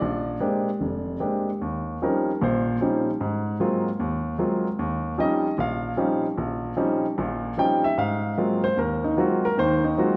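A swinging 4/4 pulse at 150 BPM, loosened by rubato and a lilting swing on the eighth notes, carries this short cut from a longer solo jazz piece. A single baby grand piano plays throughout, its natural, up-front tone spanning from F1 up to G5 and lending the music a warm, sophisticated mood. The harmony moves through rich extended chords, opening on Bb13 before shifting to Eb13 at 1.6 seconds, where the piano begins a featured solo passage that runs to the end at 10.2 seconds. From there it circles between Ab13 and Eb13, keeping the colour lush. The instrument sits in a generous recital-hall ambience with a long, wet tail, giving the close, intimate playing a sense of a large, resonant room around it.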